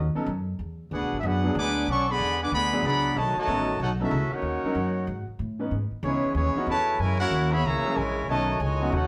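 Energetic and brassy, this short big band swing passage from a longer piece moves at 187 BPM in B major, with a warm, up-front trumpet section carrying the melody over a tight trombone section on the second line, both with light vibrato, while a woody pizzicato upright bass anchors the low end and a clear concert grand piano adds accompaniment from 0.2 to 8.9 seconds, all captured as a band playing live together in one room with moderate studio reverb.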